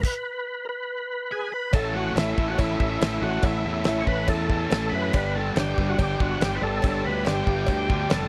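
Swaggering and driving, this classic rock excerpt moves at 141 BPM in a straight 4/4, in A major. It opens with a gritty, overdriven tonewheel organ carrying the melody up front through a slow rotary speaker and chorus vibrato, over a dry, damped 70s drum kit with a fat snare, tight kick and crash cymbal. At 1.7 seconds the band arrives on an A chord, moving to G at 5.1 seconds: an overdriven electric guitar and a sludgy distorted guitar pick out the riff, joined by a growly fuzz fingered bass. An octave-fuzz lead guitar, entering at 1.3 seconds, adds a dark, high second line in the background, while a mellow grand piano supplies accompaniment and a very quiet metallic cowbell ticks along. The sound is dry and nearly free of reverb, with the organ and drums pushed forward.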